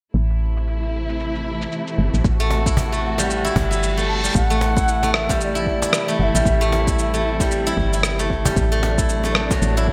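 Organic downtempo at 114 BPM in A dorian, mystical and earthy, opening with a dark, lush bowed string section holding sustained chords that pump against the sidechain, over a round, woody FM bass up front and a gritty, overdriven shaker and rim click. At 2.2 s an overdriven electronic kick enters, joined by a ringing, silvery steel-string zither playing fingerpicked arpeggios through digital delay and a snappy cajon in the background, while a reverse cymbal rises into the second section at 4.4 s. A bright, airy bass bansuri carries the melody with vibrato from 4.1 to 7.2 s, all set in a moderate hall reverb with a 1980s-style digital sheen as the harmony shifts from Am to D7/A.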